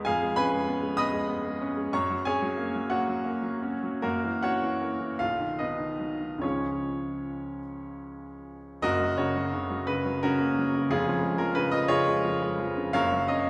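Warm and hopeful, this romantic character piece for solo piano unfolds in F# major at an unhurried 47 to 66 beats per minute in 6/8, its rubato giving each phrase room to breathe. The baby grand sounds clear and natural, with long sustain, sitting up front yet set inside a reverberant recital hall heard from further back in the room, and it ranges from E#1 up to D#6. Its harmonies drift from F# through F#7 and B to C# before a new section opens at 8.8 seconds and settles back on F# near the end of this short excerpt from a longer work.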